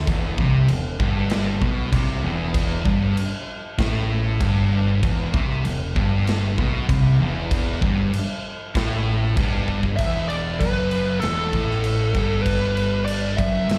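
A thick, distorted fuzz guitar riff with slapback echo dominates this ominous, sludgy stoner and doom metal excerpt at 97 BPM in E minor, joined by a darker fuzz guitar sitting in the background. A growling, bright overdriven picked bass and a big acoustic rock kit, with punchy kick, medium-tuned snare and bright cymbals, fill out the low end. After a drum fill at 9.7 seconds, a murky fuzz lead guitar enters at 10.0 seconds, its melody coloured by wah, slapback and tape echo, while the whole band sounds like a live club gig heard through the venue's PA.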